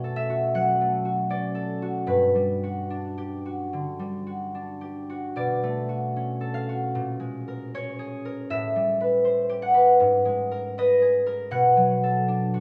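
Serene and peaceful, this short classical excerpt for solo concert harp moves in a rubato 4/4 at roughly 71-80 BPM, its chords drifting from Bm9 through Gmaj7 and a chromatic slide of Bbm7, Am9 and G#m9 before settling on Bm7. The fingerpicked harp sounds bright and ringing, spanning G2 to F#5 and sitting up front, tuned slightly low to A4 = 439 Hz. A moderate recital hall reverb and small-room ambience give its notes a gentle halo.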